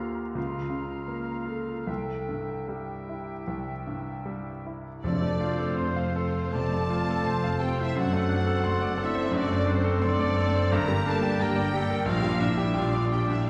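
In a flexible, rubato 4/4, this lush, passionate romantic movement for piano and orchestra opens with an up-front, polished concert grand carrying the melody, its deep bass, long sustain and audible action noise set against a punchy solo oboe, a dark, distant clarinet and an airy flute ensemble in the background. At 5.0 seconds the orchestra enters: a smooth-topped violin section with vibrato takes a second line while cellos and woody double basses fill the low end, and at 5.4 seconds a very quiet violin section adds a faint melody as portamento violas fill the middle. Soft French horn chords, roomy trumpet stabs and a brief, articulate timpani stroke with hard mallets complete the texture, all heard from further back in a wet scoring-stage reverb.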